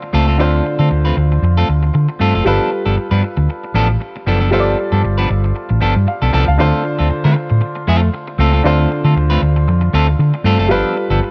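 A clean, picked electric guitar and a natural-sounding baby grand piano open this glamorous, driving disco clip on a G9 chord, joined almost at once by a dark, round, punchy hollow-body short-scale bass that sits up front as the loudest part in the mix. At 116 BPM in 4/4 with a light swing on the 16ths, the groove carries through a shift into a new section at 6.6 s, with all three parts playing to the end in a studio ambience.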